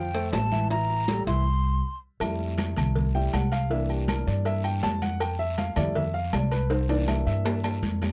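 A breathy concert flute leads the opening of this sunny, danceable Afro-Cuban jazz fragment up front, playing a brief, expressive melody with vibrato and tongued notes that ends at 2.0 seconds. From 2.2 seconds the warm, woody upright piano, accompanying from the start, moves into an intimate solo, its action noise audible, over harmony that alternates between Fmaj7 and C7. Beneath it, a pizzicato upright bass with steel strings sits up front, giving the groove a warm, woody foundation. The percussion section fills in behind: bright, high-tuned congas and round, low-tuned bongos with cowbell in the background, ringing metal-shelled timbales with agogo bells, and a raspy, vintage-sounding guiro. A drum fill arrives at 6.7 seconds, and the whole passage has the dry, close feel of a 1970s studio session, with little reverb.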